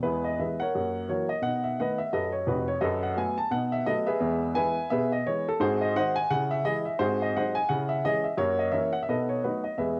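A lone upright piano, woody and up front with a cassette-tape grain, romps through an exuberant, playful stride jazz passage in E major at 173 BPM with a light swing, spanning F1 to A5 and wandering through chords like F#7, B7, G#7 and C#m under a moderate spring reverb on this homespun cassette recording.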